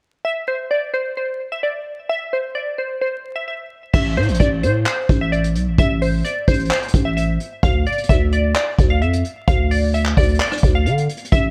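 A glassy wavetable pluck opens this brooding hip hop and trap excerpt at 0.2 s, carrying the melody alone over an open, chordless start with a crystalline, detuned shimmer shaped by chorus and a low-pass filter. At 3.9 s the beat arrives in a half-time feel: a growling, buzzy 808-style bass with a fast attack and decaying tail sits up front alongside a vintage brush drum kit. The kit brings a punchy kick, handclaps, hi-hat, rim click and dark crash cymbal, its rolled-off top roughened by 12-bit sampler grit for a hard-hitting yet dusty character. The harmony settles on Amadd11 at 3.9 s before moving to Dm at 7.6 s, while the pluck keeps warbling in its narrow upper register. A small room ambience and a layer of vinyl crackle wrap the whole track in a worn, lo-fi atmosphere.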